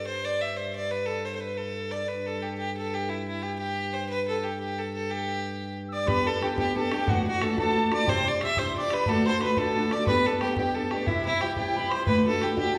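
The recording sits in the generous reverb of a church or concert hall, lending this cheerful, lively Celtic jig a resonant bloom. In 6/8 at 120 beats per minute on the dotted quarter, in G major and tuned slightly high with A at 444 Hz, it opens with a single rich, biting fiddle carrying the melody up front. Its airy bow, light vibrato and earthy, close tone ride over a reedy, breathing pedal harmonium drone on a low G. At 5.9 seconds a pure, mellow tin whistle adds a distant, expressive second line high above the fiddle. At 6.1 seconds the harmonium drops away as a dark, boxy fingerpicked steel-string parlour guitar and a damped, tight, dry bodhran enter. The guitar's accompaniment moves through G, Dadd9, Cadd9 and D, then G, C and D, while the bodhran adds a pulse beneath the fiddle and whistle.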